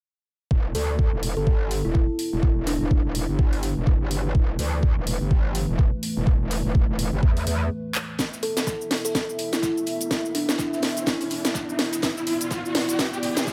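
A metallic, distorted wobble bass anchors this swaggering, bouncy bass house excerpt, riding a knocking, tape-toned kick and a house kit of cracking snare, handclaps, cabasa and hi-hat in a swung sixteenth-note groove. A dark, detuned analog pad pumps with sidechain under short phrases from a woody, ringing kalimba with delay. After a brief break at 7.7 seconds the bass stops, and a dry, high-tuned reggae kit slips into the background behind a drum fill and build-up, with an electronic riser entering at 9.8 seconds.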